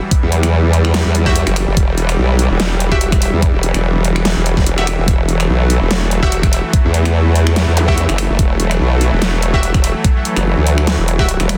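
Chaotic and heavy, this short cut of half-time wobble dubstep at 145 BPM in E minor centres on an Emadd9 chord, with an up-front sawtooth wobble bass swept through a formant filter with chorus and overdrive, an overdriven knocking kick, a layered kit of finger snaps, bright hats, toms and a huge snare re-recorded in a small room, a lush detuned supersaw pad pumping under the sidechain, a bold ring-modulated orchestra-hit-like stab with tape colour and delay sitting in the background from 1.3 seconds, and very quiet impact and zap effects at the start and at 7.8 seconds, all in a dense, heavily limited master with light reverb.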